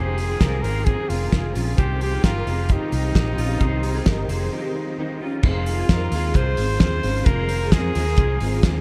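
In this excerpt of jangly indie pop in F minor at 132 BPM, a clear, close-miked trumpet with light vibrato and tape echo carries a bittersweet, wistful melody over an Fm7 opening, joined by a woody fingerpicked acoustic guitar, dark, slightly broken-up electric guitar arpeggios and a round, foam-muted electric bass, with a cloth-damped, thuddy drum kit entering at 0.2 s. Both guitars share an ensemble chorus, the acoustic sitting in the background while the punchy bass and fat-snared drums sit up front, and the whole dreamy mix is soaked in a huge ambient reverb. A break at 4.5 s leads into a new section at 5.4 s.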